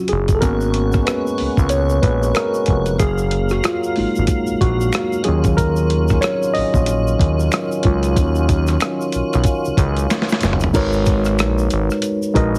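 Heavily compressed with a radio-like sheen and light reverb, this smooth, soulful neo-soul R&B excerpt sets a worn, slightly out-of-tune, lightly overdriven tine electric piano soloing from 0.4 to 10.7 seconds over a fat, nasal, detuned analog bass with a filter sweep, a gritty sampler-style drum kit with a thumpy kick that plays a fill at 10.1 seconds, a quiet tube shaker with finger snaps, and a full, clean tonewheel organ holding sustained chords through fast rotary speaker and chorus vibrato.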